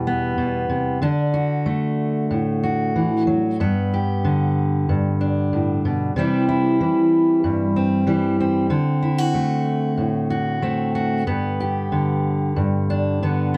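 Folk music for solo fingerstyle guitar, this pastoral and hopeful excerpt moves at 94 BPM in 4/4 with a straight feel in G major. A fingerpicked steel-string acoustic guitar carries the whole 13.6 seconds alone, ranging from E2 up to G4. Its jumbo body gives a dark, full-bodied tone on fresh strings, and a touch of finger squeak can be heard. The harmony opens on Em, passes through D, G and C, leans on D7 at 8.7 seconds, and settles on G at 11.3 seconds. Close, detailed microphones place the guitar up front, with a light reverb around it.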